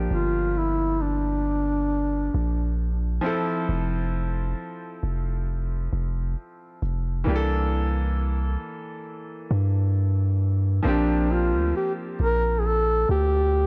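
Worn, warbling cassette tape with pitch drift and light studio reverb colors this smooth, dreamy contemporary R&B excerpt at 67 BPM in F major with lightly swung 16ths, where a clear, natural grand piano accompanies over Gm7, Fmaj7, C13 and Bb69 above a deep, sine-toned 808-style bass with long decaying notes up front, while a mellow duduk sings a folk-style solo with light vibrato and scooped notes from 0.1 to 2.8 seconds and returns at 10.9 seconds.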